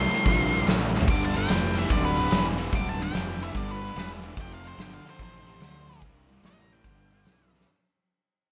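Swaggering and raunchy, this short blues rock and southern rock fragment swings at 146 BPM through C7, G7 and F7 as a dark octave-fuzz lead guitar carries the melody over a bright, double-tracked cranked stack guitar riff, a growly fuzz fingered bass, a very quiet gritty tonewheel organ with slow rotary churn and key click, and a punchy, up-front rock kit with a fat snare and fills at 0.9 and 7.5 seconds, all in a moderate club ambience that fades out across its 7.7 seconds.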